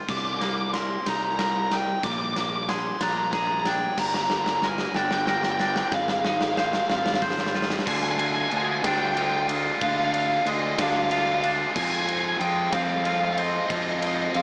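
A fuzz-soaked lead guitar carries the melody high above this brooding, cinematic post-rock passage in a slow 6/8 at 62 BPM, over twangy, phaser-tinged electric guitar arpeggios, a growly overdriven fingered bass and a huge arena drum kit with bright cymbals and a punchy kick, building with a drum fill through Cm7, Bb7, Gm and Fm7/Ab before a cranked, up-front stack guitar riff enters at 7.9 seconds over Ddim and Fm7, all heard through light reverb and a small-speaker sound.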